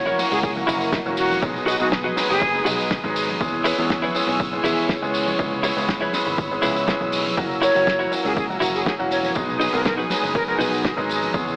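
Groovy and sunny, this short nu-disco excerpt moves at 121 BPM in a straight 4/4, cycling through F#7, B6, E6 and C#m7. A breathy jazz flute with vibrato and tape echo carries the melody in two phrases, the first ending at 2.7 seconds and the second entering at 7.6 seconds. Beneath it, a present, polished baby grand piano sits up front with slapback echo, while muted strings hold veiled chords in the background, both breathing with sidechain pumping. A clean, compressed electric guitar riff shimmers through lush chorus, and a round picked bass anchors the low end. A damped 70s kit with a rolled-off top supplies hi-hat, snare and tambourine, layered with a punchy electronic kick and very quiet soft-handed congas, all set in a small room with light reverb and an AM radio colour.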